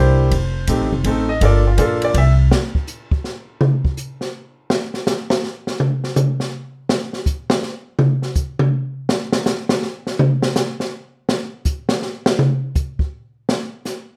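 A swinging 3/4 at 164 BPM opens this short jazz piano trio fragment in F mixolydian, where a warm concert grand with audible action noise and long sustain carries a brief solo melody over F7, Gm7 and C while the woody, thumpy pizzicato upright bass sits beneath, both parts ending by 2.5 seconds. From there the open drum kit, already entering at 0.3 seconds, takes a solo until 14.0 seconds, its boomy kick, high-tuned snare, toms, hi-hat and dark ride cymbal sounding smooth and up front. The mood stays sophisticated and relaxed, framed by a wet studio reverb in a rough home demo mix.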